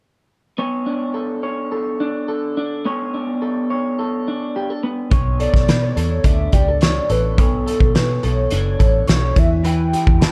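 A straight 4/4 pulse at 106 BPM carries this hazy, lonely indie and bedroom-pop excerpt in B minor, where an up-front, slightly broken-up electric guitar through a small old amp drifts on lush chorus over Bm9 from 0.6 seconds until a loose indie drum kit with a fat snare and punchy kick and a round, foam-muted vintage fingered bass arrive at 5.1 seconds, joined at 5.4 seconds by a detuned, nostalgic warbling lead steeped in tremolo, analog chorus and analog delay, before the harmony turns to Em7 near the close inside a small room reverb.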